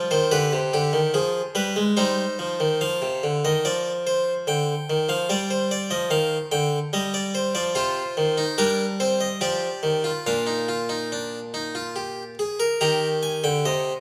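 A bright, plucked French-style harpsichord on a single set of strings sits up front in this stately yet joyful baroque-style three-part fugue at 72 BPM in 3/4, moving from F minor to Eb major at 7.8 s and ranging from Bb2 to Bb5, its solo lines ringing in a wet stone room with a 1.5-second reverb tail across this 14-second cut from a longer piece.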